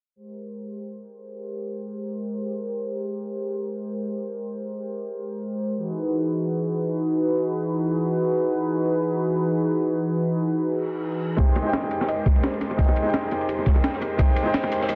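Liquid drum and bass with an uplifting, warm mood, this passage is cut from a longer piece and opens in free time on a lone analog pad. The pad is detuned and wave-folded, with a soft attack and long release, and sits up front holding bright, smooth chords under chorus, sidechain pumping and a filter sweep that runs the whole length. An electronic reverse cymbal enters at 10.8 seconds. At 11.4 seconds the rest of the arrangement arrives together. A present, polished baby grand piano plays accompaniment through dub echo, and a tine-like FM pluck with a sub octave traces gentle arpeggios in the background through chorus and tape echo. A thumpy, up-front electronic kick and a gritty sampler-style breakbeat kit with a high-tuned snare and filtered hats drive the groove, joined by a dark, saturated second breakbeat kit with dark cymbals, while very quiet, tight bongos with hard hands add close, dry detail, all in a moderate recital-hall reverb with a dense, heavily limited master.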